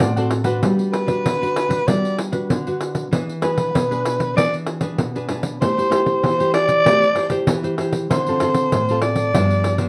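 A growling soprano saxophone leads up front with a raspy, breathy, jazz-style tone and vibrato, taking a solo from 0.6 seconds in this joyful, playful samba and choro passage cut from a longer piece. A crisp, picked cavaquinho sounds only in the opening 0.6 seconds, while a full-bodied, fingerpicked nylon-string guitar and a jingly, close pandeiro accompany throughout as the chords move from Gmaj7 through E7, Am7 and Dm7 to G7. The recording sits in a wet studio reverb and carries the worn, warbly pitch drift of old cassette tape.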